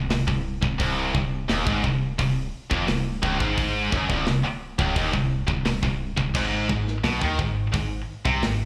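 A bright, high-gain electric guitar leads this short heavy metal excerpt, its picked riff in C harmonic minor coated in distortion and slapback echo. A second high-gain guitar sits in the background with the same distortion and echo, joined further back by a tight, double-tracked distorted guitar, all three riffing between C2 and Eb3. Beneath them, a punchy, wave-folded analog bass has a fast attack, a filter pluck and decaying notes. An acoustic drum kit with a tight kick, medium-tuned snare, hi-hat, crash and a rolled-off top keeps a straight 4/4 pulse at 86 BPM from 0.1 to 8.6 seconds. The harmony rests on C minor before moving to an Ab power chord at 6.3 seconds. The mood is relentless and epic, heard as a live gig through the venue's PA with light club reverb.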